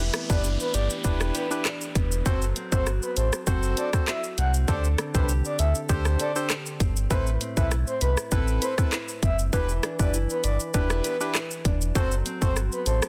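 A background downlifter falls away over the first 4.7 seconds as hollow, percussive organ stabs with chorus, fingerpicked nylon-string guitar arpeggios through digital delay and a deep, sine-toned sub bass with its octave open this tough, bouncy dancehall excerpt in E minor at 99 BPM. A tight, produced island pop kit of kick, handclaps, hi-hat, rim click and shaker sits up front with the full bass, while a breathy, flute-like synth lead with vibrato, chorus and delay carries the melody from 0.3 seconds over chords moving through Em7, F#dim, D7sus4 and Amadd9. The mix has a digital ambience and a dense, heavily limited modern master.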